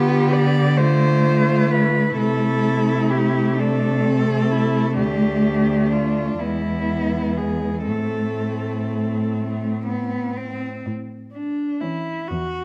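Classical and elegiac, this short passage from a longer work for cello ensemble moves at a slow, rubato 40-44 BPM in 6/8, in A minor tuned to A4 = 437 Hz, with a yearning harmony that passes through Dm7, Am/C, Dmadd11 and E before settling on Am and then turning to an A chord at 10.9 s. Four bowed cellos, each played singly with vibrato and expressive portamento, share the texture: a warm melody, a dark, smooth-topped second line and a rich accompaniment, all with soft attacks, over a warm, smooth-topped, up-front bass cello. The close, detailed sound sits in a moderate recital-hall reverb.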